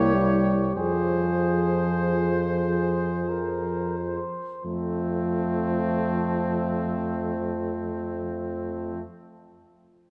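Opening together, a clear cornet with light vibrato carries the melody over a mellow flugelhorn second line, a smooth-topped euphonium and a tight trombone section in the background as accompaniment, and a roomy, up-front tuba bass with vibrato, in a melancholic, elegiac, hymn-like classical brass band piece at 32 BPM in dotted quarters of 6/8, rubato and slowing through its first 4.6 seconds as C7b9 moves to Fm before settling on F, set inside a dark church reverb.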